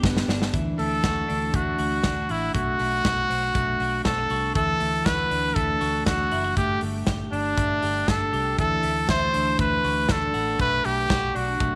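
A light reverb and small room ambience frame this brief, youthful slice of jangly indie pop, cut from a longer piece and carrying a nostalgic glow in a straight 4/4. A drum fill opens it in the first half second before the modern studio kit settles in with hi-hat, a tight kick and a medium-tuned snare, its acoustic tone airy and polished. Underneath, a vintage muted fingered electric bass sits dark and round, its foam-muted, amped sound anchoring the low end. A twelve-string electric guitar spins clean, twangy, compressed arpeggios with a touch of tube saturation, moving through chords such as Dadd9, Bm7 and Gsus2. Entering at 0.8 seconds, a bright trumpet carries the melody up front in a pop solo style, its present tone trailed by tape echo.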